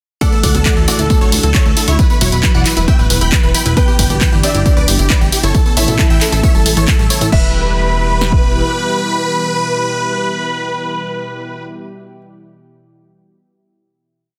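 Dry, dense and heavily limited, this uplifting trance piece in E dorian moves at 135 BPM with an emotional, driving feel. It is built on a punchy analog drum machine's four-on-the-floor kick and snare, tape-warm claps, hats, tambourine and crash, and a funky, galloping sixteenth-note analog bass with sidechain pumping. A huge, euphoric detuned supersaw lead repeats a sixteenth-note riff in thirds and sixths over a pedal note, coloured by phaser, cassette tape and tape echo, while a thick chorused unison pad sustains the D, Em and A chords, a ring-modulated pluck sequence sits in the background through digital delay, and a clear concert grand piano repeats an octave riff with dub echo. At 7.3 seconds the drop gives way to a final Em chord, and the piano rings on last until 12.2 seconds.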